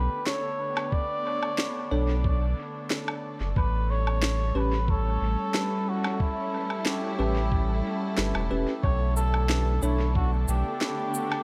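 A straight 4/4 pulse at 91 BPM drives this meditative, spacious ambient dub excerpt in B minor: a muffled, pitched-down electronic kick drum enters at 0.9 seconds beneath a woody electronic snare, woodblock and shaker carrying dub echo, while a round sine sub bass sits up front and a dark studio string section, bowed sul tasto with vintage 12-bit sampler grit, holds sustained chords moving from Bm7 to A7 and back. A veiled, cup-muted trumpet sings the melody through its own dub echo, and a bright, bell-like tine electric piano adds very quiet stabs from 1.9 seconds, all set in a lightly reverberant room.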